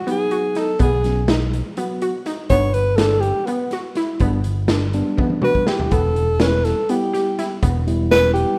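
Driving along in 7/8 at 246 eighth-note beats per minute, this intricate progressive instrumental opens as a breathy tenor saxophone takes a jazz-style solo full of scooped notes and vibrato, set up front over a mellow tine electric piano and a glassy, detuned wavetable pluck spinning chorused arpeggios through a B, G and E minor progression. A gritty garage drum kit with a punchy kick and a rolled-off top supplies the pulse, adding a fill at 5.2 seconds, while a round, amped picked electric bass enters at 0.8 seconds. The short cut has the rough feel of a home demo in a small, lightly reverberant room.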